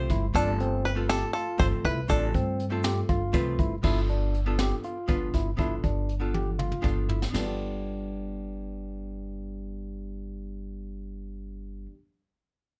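A light reverb gives this short cut from a longer progressive instrumental an intricate, bright glow, with the band moving in 7/8 at 240 BPM counted in eighths with a straight feel in G mixolydian. A twangy, percussive bluegrass banjo, played with fingerpicks, carries the melody only until 3.3 seconds, while a grainy egg shaker sits in the background early on. Underneath, a woody, thumpy upright bass with gut strings stays up front, and a clean, hollow-body archtop guitar, miked and amplified with a dark tone, plays picked accompaniment throughout. A barky tine electric piano, clean through a combo amp, spins arpeggios across the whole passage, and the harmony shifts from F over G to G7 at 3.8 seconds. A jazz kit played with brushes, with smooth, dark cymbals, a high-tuned snare and a boomy kick in a small room, drives the groove and adds a fill at 6.3 seconds, joined briefly by a guitar fill before the drums stop.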